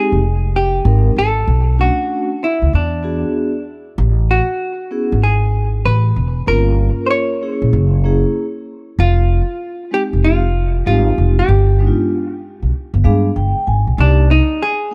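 A cool, mellow jazz-hop groove opens at once, with a vintage hollow-body jazz guitar carrying the melody over a vibraphone played with soft mallets, and an upright bass entering at 0.1 seconds. The tempo sits at 96 BPM in 4/4 with a swung sixteenth-note feel, giving the hip hop pulse a relaxed lilt. The bass is the most prominent part, a woody, growly pizzicato tone from steel strings sitting up front in the mix, while the clean, picked guitar has an electric hollow-body character touched by analog delay. The vibraphone adds a metallic, ringing shimmer with a slow motor vibrato, mid-forward behind the guitar, and takes a short fill from 12.7 to 14.0 seconds. The harmony moves through rich jazz chords such as Fm7, E9, Amaj7(no3), Gm7b5, Fm9 and G7b9 before landing on Cm7, all bathed in studio reverb in what is clearly a section lifted from a longer piece.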